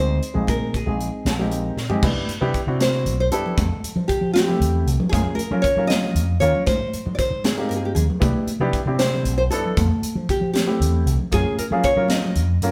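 Rolling in 6/8 at 77 BPM, this funky, slick electric jazz fusion excerpt sets a fingerpicked nylon-string guitar melody with audible finger squeak over a dark, worn grand piano with action noise, a bright slap bass pushed through an envelope filter, distant high-tuned congas and a crisp, polished drum kit with a high-tuned snare that fills at 1.8 seconds and again from 7.6 to 8.2 seconds, all moving from a Bb9sus4 into major-ninth chords in a live stone room.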